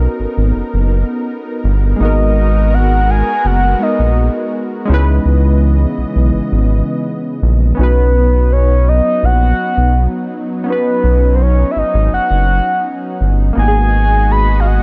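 Chorused, filter-swept analog keys and a smooth, detuned vintage pad open this sensual, moody contemporary R&B excerpt at 83 BPM alongside a deep, round bass up front with a ring-modulated edge, moving through Bmaj9, G#m9, C#m9 and Badd9 in a dark, dry mix, before a mellow octave-layered synth lead with vibrato and tape echo carries the melody from 2.0 seconds.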